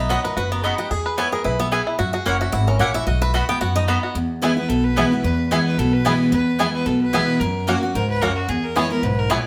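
Bluegrass at a driving 222 BPM in 4/4 with a light swing on the eighths, this joyful fragment is cut from a longer piece and moves through B, E and F#7 chords. A bright, full-bodied picked steel-string acoustic guitar sits up front and takes a solo over the opening 4.2 seconds, while a twangy, percussive banjo played with fingerpicks carries the melody, also sitting up front. Underneath, a woody, growly pizzicato upright bass thumps out the low end, and a mandolin with its double strings adds crisp stabs throughout. A rich, earthy fiddle enters at 4.6 seconds with light vibrato and a biting, airy bow, playing a second line as the fiddle's solo section unfolds. The whole band plays live together in a moderately reverberant stone room.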